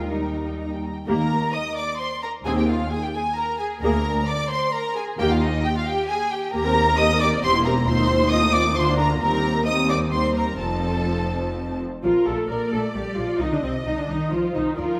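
Muted strings open this quick, graceful classical-period movement for string orchestra in 3/4 at 132 BPM. The upper section carries a cheerful, up-front melody with dark vibrato, while a second violin line, violas, cellos and double basses fill in beneath, every section con sordino with soft attacks. The rubato playing is veiled in tone and moves from Eb major to Bb major at 6.5 s; the cellos use a lighter vibrato, the double basses add a lush, warm floor, and a wet scoring-stage reverb surrounds the ensemble until the music is cut off at 15.0 s.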